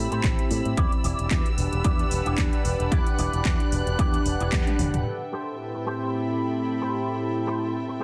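A dense, heavily limited mix in a moderate room carries this groovy, cosmic nu-disco excerpt at 112 BPM in A dorian, where a detuned, wave-folded analog pad with chorus and veiled, muted strings with sidechain pumping hold Am7 and Em7 chords, a punchy picked bass with an envelope filter and a dark, clean guitar riff with an envelope filter ride over an overdriven electronic kick and a house kit with metallic hats, handclaps and toms, until a drum fill and band accent at 4.5 seconds give way at 5.1 seconds to a filter sweep on the guitar alongside the pad and strings.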